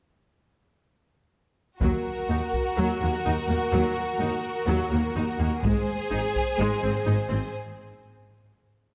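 At 1.8 s, a dramatic, epic orchestral film cue in Eb dorian opens at 126 BPM, with a close, rich violin section carrying the melody over an up-front, clear second violin line, intense bowed violas, and lush cellos and double basses set in the background, all played with vibrato. A taiko ensemble struck with hard sticks, its sound compressed and saturated, pounds out a short burst at the start and again at 5.6 s, when the harmony shifts from Ebm to Ab. The strings stop around 7.5 s, leaving the moderate reverb of a scoring stage to ring through the final break of this fragment from a longer piece.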